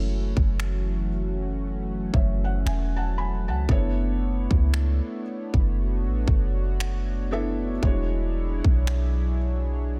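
A digital ambience surrounds this moody, longing slice of contemporary R&B, cut from a longer piece and moving at a slow 58 BPM in 4/4 with a 16th-note swing in F# minor. A felt-muted upright piano plays soft, intimate accompaniment from the start, while a chorused pulse-width pad holds sustained chords with a shimmering, retro, airy character, its soft attack and long release smoothing the edges. Underneath, a clean 808-style bass sits deep and boomy up front, its sine tone striking quickly and then decaying into darkness. A trap drum kit of finger snaps and a hard-clipped kick comes in at 0.4 seconds and drops out at 9.1 seconds, sounding electronic and produced, forward in the mix. The harmony drifts from F#m7 to Bm11/F# at 3.7 seconds and lands on E13 at 7.8 seconds, keeping the mood yearning.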